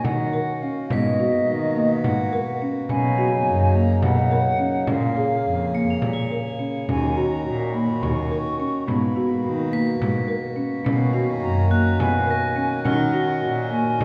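A straight 7/8 pulse at 211 BPM in eighths drives this hypnotic, urgent piece of contemporary chamber music in Eb minor, cut from a longer work, its harmony cycling through Ebm7, Abm9, Bmaj9 and Bbm7. A distant, pure-toned wooden flute with vibrato carries the melody over reedy, breathing harmonium chords, woody soft-mallet marimba arpeggios, a small, bright frame drum in the background and a dark, veiled muted cello bass placed up front. Shimmering, bell-like crotales add airy texture, dropping out at 1.9 seconds and returning at 5.7 seconds, all set in a reverberant recital hall heard from further back in the room.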